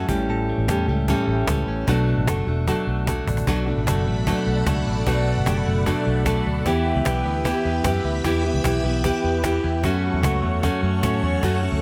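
Bittersweet and restless, this jangly indie pop excerpt in B minor moves at 151 BPM, with a fingerpicked, up-front steel-string acoustic guitar carrying the accompaniment over a round, foam-muted vintage bass while a bright, compressed clean electric guitar plays arpeggios through digital delay and a snappy, close cajon struck with hard hands drives the beat, throwing in a fill at 3.1 seconds before a swirling, slow-attack string machine with ensemble chorus and phaser enters at 3.5 seconds with sustained chords over a dry mix moving from A7 through Bm7 and Em to F#m.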